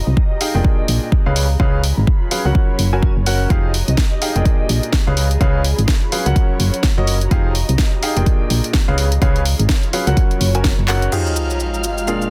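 Energetic and soulful, this piano house cut moves at 126 BPM with a swung 16th-note feel, cycling through Fm9, Bb7, Db7 and Gb6 as a clear baby grand piano riff with dub echo rides over a punchy electronic kick, a house kit of cracking snare, handclaps, shaker, crash and warm hi-hats, and a round, fast-attack FM bass that pumps against the kick. An ethereal, detuned pad with chorus, tremolo and built-in reverb hovers in the background, while the dense, heavily limited mix otherwise stays dry and up front. After a drum fill at 10.9 seconds, an electronic sub drop lands at 11.1 seconds as the bass stops and a dark, woody, low-pass-filtered string section enters with lush bowed chords.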